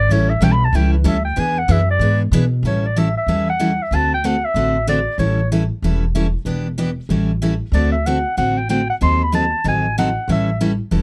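Close, detailed microphones and little reverb give this charming, playful stretch of acoustic string swing, cut from a longer piece, an intimate, up-front sound. A mellow, vintage clarinet carries the melody in a jazz style with light vibrato, subtone and scooped notes, taking a solo at the start and returning at 7.7 seconds. Beneath it, a woody, thumpy pizzicato upright bass with gut strings and a bright, full-bodied picked steel-string guitar, complete with finger squeak, drive the swung accompaniment through A7, D7 and a D#dim7 chord.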